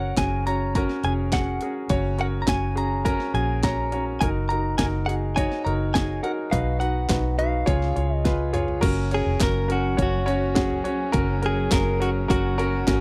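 A clear concert grand piano drives this uplifting, hopeful pop excerpt, its polished, present chords sitting up front with a deep low end and short sustain. At a straight 104 BPM in 4/4 and F# major, the harmony moves from F# through D#m/F# and B to C# before landing back on F#. A clean, compressed electric guitar carries the picked melody with a direct-recorded tone, while a dark, round, foam-muted fingered bass holds down the low end with an amped, vintage character. The house drum kit comes in at 0.2 seconds, layered and punchy, with a cracking snare, handclaps, hi-hat, toms and crash cymbal, and a drum fill at 8.3 seconds leads into the next section. At 8.8 seconds a lush, bowed string section with smooth vibrato enters in the background on sustained chords. The excerpt has a dry, close 1970s-style studio sound.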